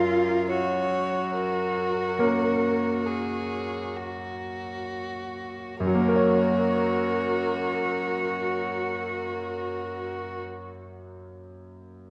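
A slow, lyrical piano trio movement opens with all three players together: a rich, focused violin sings the melody with vibrato, a smooth, up-front cello bows a second line beneath it, and a bright, brilliant grand piano with long sustain carries the accompaniment, the rubato pulse easing back through the first 5.8 seconds. The serene mood is wrapped in wet concert hall reverb and the warbling pitch drift of worn old cassette tape, giving the sound a vintage haze. The strings stop at 10.4 seconds, leaving the piano alone until this fragment of a longer piece breaks off at 12.1 seconds.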